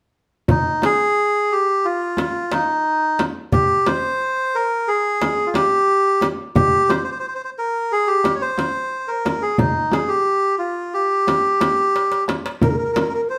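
Soulful and longing, this fragment of a Turkish makam ensemble moves in 9/8 at 178 BPM counted in eighths in C minor, with a reedy, nasal melodica carrying the melody up front over a crisp, small metal-shelled darbuka and a soft-handed frame drum, a drum fill at 11.9 seconds leading to a hollow, breathy low ney that enters at 12.6 seconds with a vibrato-laden second line, all played live together in one room under a wet studio reverb.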